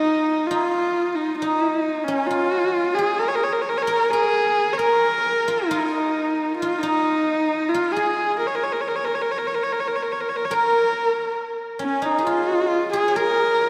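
Solemn and windswept, this Mongolian folk passage moves at a slow 66 BPM in a Bb yu mode and is cut from a longer piece. A husky, nasal horsehead fiddle carries the melody up front, bowed with vibrato and portamento, while a bright, silvery guzheng plucked with fingerpicks rings out a second line alongside it, both touched by a diffuse ambient delay. A lush hall reverb soaks the whole mix in a dreamy haze, and the music shifts into a new section at 12.2 seconds before the piece breaks off at 13.7 seconds.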